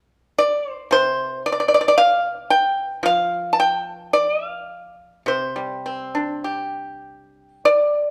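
This is a short passage of Chinese traditional music for solo plucked strings, cut from a longer piece and carrying a flowing, elegant mood. A lone pipa enters at 0.4 seconds and plays until 8.1 seconds, moving freely in rubato around a slow pulse of roughly 50-57 BPM in 4/4. Played with fingerpicks, the acoustic pipa sounds percussive and dry, sitting up front in the mix, and its line spans from C3 to A5. The instrument is tuned slightly above standard pitch, with A4 at 441 Hz. The performance was captured live in a fairly large studio, whose moderate reverb, with a 1.3-second decay, gives the solo a sense of open space.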